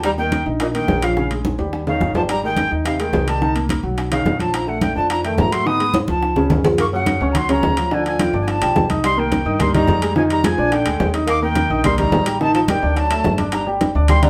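Lively and sunny, this Afro-Cuban jazz excerpt in Bb major races along at 214 BPM, with an airy, chiffy metal flute carrying the melody up front over a deep-voiced grand piano, a thumpy, gut-strung upright bass played pizzicato, ringing metal-shell timbales, thick-skinned congas and round, low-tuned bongos in the background, while a mellow tenor saxophone with subtone and scooped notes adds a second line, the band heard live in one room through a wet studio reverb, with drum fills at 1.4 and 5.9 seconds.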